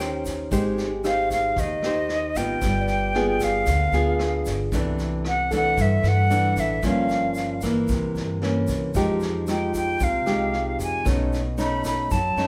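Sunny and romantic, this bossa nova excerpt moves with a straight, easy feel in four. An airy silver concert flute carries the melody up front with gentle vibrato and a soft attack. A fingerpicked nylon-string guitar, equally forward, supplies classical-style accompaniment complete with audible finger squeak, while a clean tine electric piano sits in the background until 11.1 s and a woody pizzicato upright bass anchors the low end. A vintage brush kit gives a boomy kick, rim clicks and a medium-tuned snare with a rolled-off top, and from 0.3 s a grainy, bright tube shaker rustles far behind. The harmony drifts through rich chords such as Abmaj7, G7b9 and Fm9, set in the moderate reverb of a recital hall.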